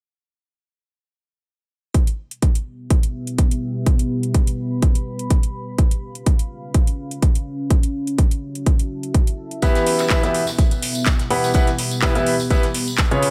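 A clear, intimate baby grand piano with audible action noise arrives up front at 9.6 seconds, playing a riff through delay and sidechain pumping. Alongside it come a very quiet, gritty sampler-style breakbeat kit of hi-hat and snare and a compressed, saturated tambourine in the background. This soulful, bittersweet piano house excerpt in E dorian moves at 125 BPM with a light 16th-note swing. From 1.9 seconds a punchy, layered electronic kick sits up front with a tape-colored house kit of handclaps and metallic hi-hats, and from 2.8 seconds a deep, moody sawtooth pad with a sub octave, chorus and its own reverb pumps beneath an Em, C#7, F#m7 progression in a dry, close sound.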